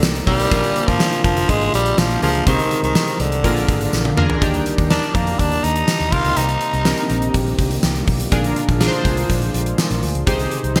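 Glossy and nostalgic, this 1980s-style pop excerpt in Eb major moves at 123 BPM, with a raspy, gritty tenor saxophone carrying the vibrato-laden melody up front with delay until 7.3 seconds over glossy chorused retro synth keys, a shimmering, very quiet pulse-width pad, a round, foam-muted fingered electric bass, a gated 80s drum kit with a fat snare and a fill at 3.9 seconds, and a jingly, close tambourine, all set in a lush hall reverb with bright digital polish.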